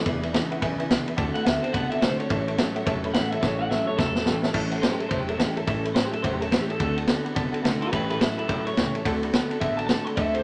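A punchy, dark-cymballed vintage drum kit sits up front in this rowdy, upbeat swung rockabilly fragment, with a fill from 3.4 to 4.5 seconds, driving a twangy, slightly broken-up lead guitar melody through a small old amp, a clean, compressed and scooped electric guitar riff that takes a solo until 4.5 seconds, a full-bodied picked dreadnought acoustic with finger squeak, a detuned, jangly honky-tonk upright piano, and a woody, thumpy upright bass in the background, all set in a moderate studio reverb.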